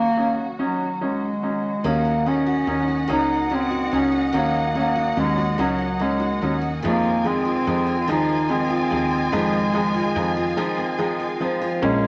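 A warm, vibrato-rich bass clarinet carries the melody of this dramatic, melancholic six-eight pop ballad from the start, over a bright upright piano and lush bowed symphonic strings in a wet studio reverb, with picked steel-string acoustic guitar arpeggios and a dark, round fretless electric bass joining at 1.8 seconds before a brief break at 10.6 seconds in this fragment cut from a longer piece.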